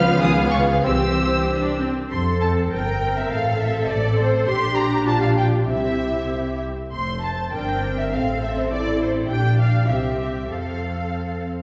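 Spirited and graceful, this short passage cut from a longer classical-period movement for string orchestra moves in a quick 2/4 with a supple, rubato feel. The violins carry the melody high above a second violin line, both heard as distant, lush ensembles with vibrato. Violas fill in the accompaniment with a smooth top, while cellos and double basses share the bass, the double basses sitting up front with a rich, bowed weight. After a brief opening that turns through Db7 to C, the music settles at 2.1 seconds into a recurring progression that moves from F through Amadd11 and Gm7/Bb back to C and home to F. The whole ensemble sounds from further back in a wet scoring stage, its reverb giving the strings an even, spacious glow.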